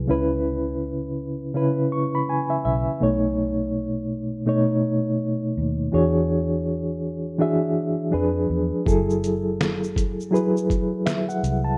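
A loping 82 BPM groove in 4/4 with a 60% swing on the 16ths sets this hazy, melancholic lo-fi hip hop excerpt in F# minor, where a reedy electric piano with fast tremolo and cassette tape coloring carries the chords up front from C#m7 through B9, E13 and Fdim7 to F#m9, slipping in a fill between 1.5 and 3.0 seconds. Underneath, a dark, round, foam-muted fingered electric bass sits low throughout. At 8.9 seconds a gritty, pitched-down sampler-style drum kit arrives with a thumpy kick, medium-tuned snare, hi-hat, shaker and finger snaps, all roughened by 12-bit sampler grit in a rough home demo mix with light reverb.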